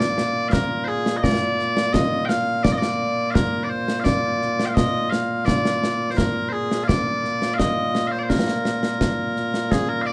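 Loud, bright bagpipes carry the melody from the first moment, their piercing, continuous tone sitting up front as the solo voice and ranging from Bb2 to G5. This is Scottish traditional pipe music in Bb mixolydian, moving at a steady 85 BPM in a straight 2/4 that gives it a stirring, proud character. Beneath the pipes, a concert snare drum and concert bass drum supply the drum part, with dark cymbals and an acoustic, small-room sound. The recording uses close, detailed microphones and a light reverb, keeping the playing clear and immediate. Cut from a longer piece, the clip presents a single section lasting about 10 seconds, with the drums stopping at 9.9 seconds just before the pipes end at 10.1 seconds.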